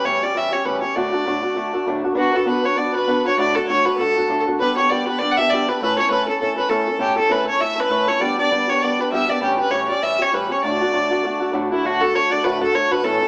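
A rich, smooth fiddle carries the melody from the opening moment, played with light vibrato and an even bow, while a fingerpicked acoustic guitar with a dark, boxy tone supplies swinging accompaniment beneath it. This is a lively, rollicking Celtic reel with a gently swung lilt, cut from a longer piece. At 2.2 seconds a second fiddle joins in the background with a brighter, biting, intense edge, adding a supporting line under the lead. Both fiddles sound distant despite the lead sitting up front, and the band plays live together in a moderately reverberant stone room that gives the whole a small-speaker character. The harmony moves through familiar folk changes before the tune shifts into a new section at 11.8 seconds, shortly before the excerpt ends.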